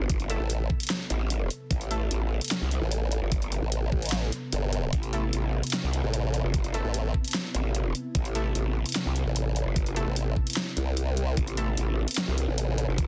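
A half-time groove at 149 BPM in 4/4 drives this menacing, chaotic heavy wobble dubstep in A minor, cut from a longer piece. A layered electronic kick knocks with a tape-tinged weight, while the dubstep kit sits up front with a huge snare and bright hats. Two basses share the same low register: an aggressive, saturated growl bass with unison voices, chorus and overdrive, and a formant-sweep wobble bass built from detuned sawtooth and sine tones, also chorused and overdriven. Further back, an evolving wavetable pad morphs through sustained Amadd9 chords with a slow attack, built-in reverb and sidechain pumping. A bold, ring-modulated orchestra-hit-like stab with a noise layer and a filter sweep flashes in at 0.3 s and returns at 5.1 s through cassette-tape colour and dub echo, all set in a dense, heavily limited master with little room sound.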